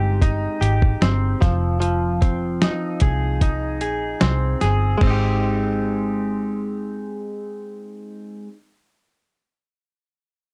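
A dark, warm production sits in a modest small room for this short excerpt of hazy, laid-back indie and bedroom pop. At 75 BPM in 4/4 with a straight feel in Ab major, a bright, twangy clean electric guitar, recorded direct and picked up front, carries the accompaniment with a lush chorus and a warbly pitch drift. Beneath it, a vintage muted fingered electric bass adds a round, foam-muted low end. A dusty soul sampler-style drum kit, compressed and gritty with a thumpy kick, a medium-tuned snare, hi-hat and crash cymbal, comes in at 0.2 seconds and drops out at 5.2 seconds, leaving guitar and bass to carry on. The harmony moves from Abmaj7 to Fm7 and returns to Abmaj7 at 5.0 seconds as a new section begins.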